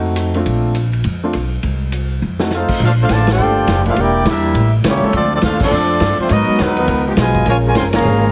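A smooth-topped trumpet section carries the melody from 2.5 s in this brassy, joyful big band swing fragment at 206 BPM in Bb major, joined by a tight trombone section with light vibrato on a second line and, from 3.4 s, a background trombone section holding sustained chords, while a woody, thumpy pizzicato upright bass and a vintage drum kit with dark cymbals and a punchy kick underpin the swing, an intimate concert grand piano with audible action noise accompanies until 2.5 s, and the mix has light reverb and a heavily compressed radio sound.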